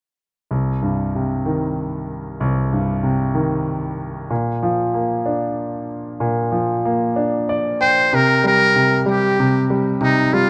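Pop in a straight 6/8 with an aching, melancholic mood, this fragment of a longer piece opens on a bright, deep-bassed concert grand piano accompaniment up front, which plays a fill at 7.2 s before a buzzy, thin metal-muted trumpet enters at 7.8 s with a close, jazz-style solo melody full of vibrato and scooped notes, all set in a lush hall reverb within a rough home demo mix.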